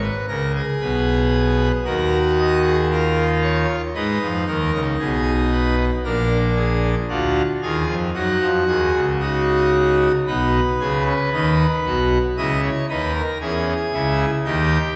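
A steady, straight 4/4 pulse at 57 BPM drives this serious baroque-style three-part fugue in G# minor, cut from a longer piece and played solo on a majestic, brilliant full pipe organ with mixtures and romantic voicing, spanning A#1 to D#5 and placed up front, though heard from further back in a wet scoring-stage reverb with a muted top end, moving through G#m, D#m and A#7 before a new section at 10.3 seconds turns to G#m/B and C#m.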